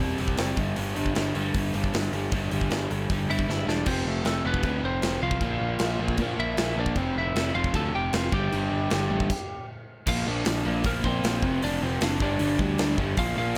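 A crunchy, overdriven rhythm guitar drives this upbeat, energetic punk rock cut, its double-tracked riff sitting up front from the very start in a straight 4/4 drive. A growly, punchy picked electric bass runs underneath, while a big acoustic rock kit with bright cymbals, a punchy kick and a medium-tuned snare comes in almost at once and rolls through a drum fill just before a new section at 3.9 seconds. A twangy, slightly broken-up lead guitar, compressed and picked, carries the melody from 3.3 seconds onward, ringing high above the riff. The chords move among F, Bb and G5, and a stop between 9.3 and 10.1 seconds sets up a final section where the changes come quicker. Light reverb surrounds the band, and the recording is cut from a longer piece.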